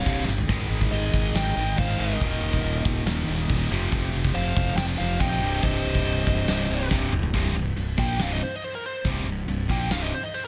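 A straight, driving 4/4 beat at 140 BPM powers this menacing hard rock fragment in C minor. An acoustic arena drum kit sits up front in a big room, with a punchy kick, a fat snare, crashes and toms, and it rolls through a fill just after the start and again leading into the solo. A growly fingered electric bass with fuzz anchors the low end, while a distorted electric guitar and a picked, bright semi-hollow guitar churn out the riff in the background over a progression that moves through Ab5, Eb, F5 and Cm. A thick, gritty tonewheel organ on a slow rotary speaker holds very quiet sustained chords, and a smoother, shadowy second lead guitar weaves a line beneath the main melody until 6.9 seconds. The bluesy, overdriven lead guitar carries the tune with a dark, distorted tone and slapback echo, and at 7.3 seconds the organ drops out and that lead breaks into a solo over a C5 chord until 10.5 seconds.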